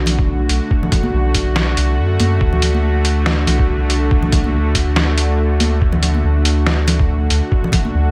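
A swung, half-time groove at 141 BPM, built from a thumpy, pitched-down electronic kick and a gritty, compressed sampler-style trip hop kit with hi-hat and medium-tuned snare, with soft-handed congas in the background trailing dub echo, drives this meditative, brooding deep dubstep excerpt, where a round, up-front sub bass sits beneath a tense, bright, string-like bowed drone with slow attack, vibrato and vintage 12-bit sampler texture, moving from Bm to D at 2.4 s under light reverb.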